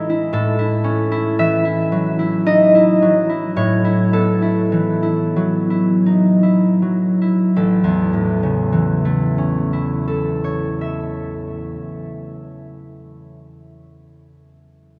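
This is a classical solo harp piece, serene and dreamy, moving in a rubato 3/4 at a slow 37 to 61 BPM in A lydian, tuned to A4 = 438 Hz. A single concert harp carries everything from 0.0 to 13.3 seconds, its warm, ringing, fingerpicked tone set up front and ranging from A1 up to E5. The harmony drifts from A6 through F#m7/A and settles back on A at 7.6 seconds, where the opening section gives way to a second section that runs to 11.8 seconds. The tempo slows through the first 7.6 seconds, giving the opening a gently unhurried pull. The harp sits in a vast, echoing cathedral with a long, wet reverb that hangs around every note, and the short passage is cut from a longer piece.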